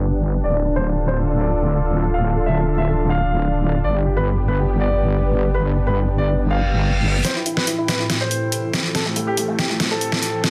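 A heavy, saturated sawtooth wobble bass dominates this chaotic, aggressive half-time dubstep, sitting up front over a lush, detuned unison pad with chorus and phaser and a warbling, lo-fi tape-like pad in the background. A dark, mellow baby grand piano carries the melody through dub echo from 0.4 seconds, moving over Dm and G under a filter sweep, while a reverse cymbal and riser enter behind it. At 7.2 seconds the bass stops and an overdriven electronic drum kit with a deep snare and bright hats enters with a fill and build-up on Am7, in a dense, heavily limited modern master.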